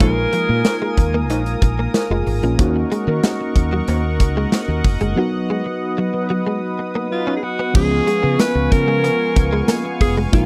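Moody and urgent, this 1980s-style pop excerpt moves at 93 BPM in a straight 4/4, built on a big, punchy rock drum kit with tambourine and a background cowbell that drops out at 4.7 seconds, over a round, dark fretless bass, a tremolo-laden FM electric piano, a clean, compressed direct guitar riff and an evolving sawtooth pad that swells behind them. A bright, forceful alto saxophone with scooped notes and slapback echo sits up front, stating a phrase at the start and returning at 7.1 seconds, while very quiet, detuned synth brass stabs enter at 6.1 seconds during a band accent break. The close, dry studio sound keeps every part immediate as the chords move from Bb7sus4 through Ebm7 and B to Db7.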